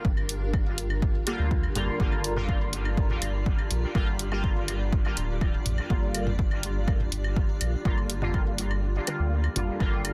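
A dense, heavily limited modern master set in a digital ambience opens this cavernous, deep dub techno excerpt, which moves at 123 BPM in straight 4/4 and sits on a single G minor seventh chord throughout. A cloudy, blurred granular pad carries sustained chords with a slow attack and long release, its detuned unison voices evolving under a moving notch and bathed in built-in reverb, while a round, soft sub bass with tube saturation holds down the low end; both breathe with sidechain pumping. A punchy analog kick, re-recorded in a small room, drives the groove, joined from 0.2 seconds by layered electronic claves and toms that sit in the background, pumping and trailing dub echo, and from 0.3 seconds by an up-front hi-hat, also re-recorded in a small room. At 1.3 seconds a juicy, resonant sawtooth polysynth enters with bright, detuned stabs, colored by ring modulation, chorus and phaser, sent into dub echo and carried along by a continuous filter sweep. 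Near the end the kick drops out at 8.8 seconds, leaving the pad, bass, stabs, hi-hat and percussion hanging in the reverberant space.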